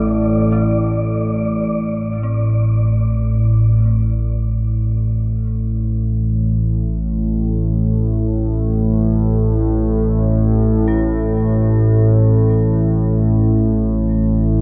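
Cavernous and ominous, this free-time dark ambient drone excerpt in A minor, tuned to A4 = 439 Hz, rests on an up-front, evolving, wave-folded analog drone with chorus that gets a filter sweep while an airy, breathy wind-like tuned noise texture hangs over an Asus4 until 2.2 seconds. Then the harmony settles on Am, and an eerie, inharmonic, warbling FM synth bell with chorus and delay, which has been playing arpeggios in the background from the start, fades in through to 14.6 seconds. Everything is steeped in a huge, wet reverb with a cassette-tape character.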